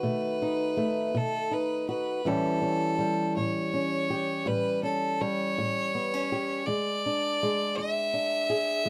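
A slow 12/8 at 54 dotted-quarter beats per minute carries this short, laid-back and gritty acoustic country blues fragment, where a clear, intensely bowed fiddle with light vibrato and a smooth top sings the melody up front over a dark, woody, boxy fingerpicked ladder-braced guitar on old strings, moving from B7 to A7 at 2.2 seconds and E7 at 6.7 seconds in a moderate booth ambience.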